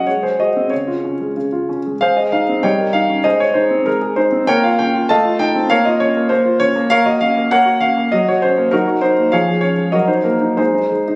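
In a 2/4 taken with rubato, hovering between 90 and 101 BPM, this cheerful, graceful classical-period piano sonatina fragment moves in Ab major and is cut from a longer piece. A solo concert grand carries everything across its 11.2 seconds, ranging from Db3 up to A5 with a warm, intimate, natural tone, a deep bass and audible action noise, and it sits up front. The harmony opens on Ab7 resolving to Db, then at 2.0 seconds a new section begins on Ab and wanders through Eb7/G, Bbm and F7/A before settling into Gb and Ebm/Gb colours. It closes back home on Ab at 10.6 seconds. Captured on a phone in the room, the sound is wrapped in a moderate recital-hall reverb with a clubby ambience around it.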